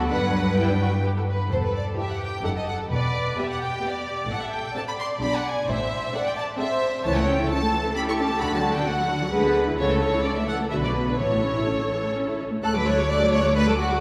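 A quick, lively and graceful classical-period movement for string orchestra in 3/4 at 130 BPM, cut from a longer piece, it moves from E minor to D major at 7.0 s. A distant, intense upper violin section carries the melody from 0.1 s, with a smooth, lightly vibrato second violin line and a focused, lush viola accompaniment sitting close beneath it. Bowed cellos, kept in the background, and clear double basses anchor the bass, all heard through a church reverb with a 3.8-second tail.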